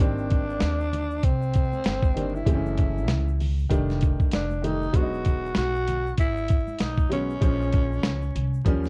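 A growling tenor saxophone carries the melody in this nocturnal, mellow jazz-hop cut, its breathy subtone, vibrato and scooped notes giving it a raspy, gritty edge under a smooth top, all set in plate reverb. Beneath it, an upright piano with a woody, vintage tone and short sustain plays the accompaniment in the same plate reverb, while a pizzicato upright bass on gut strings adds a dark, thumpy low end. Bright, close tube shaker and congas come in at 0.2 seconds and sit in the background. A compressed, muffled, sampler-style drum kit enters at 0.3 seconds and sits up front, with a thumpy kick, a medium-tuned snare and hi-hat, re-recorded in a large room. At 97 BPM in 4/4 with a swung sixteenth-note feel, the harmony moves through G#maj7, F#m9, F13, Emaj7 and A#m7. The warm production carries light reverb and a layer of vinyl crackle.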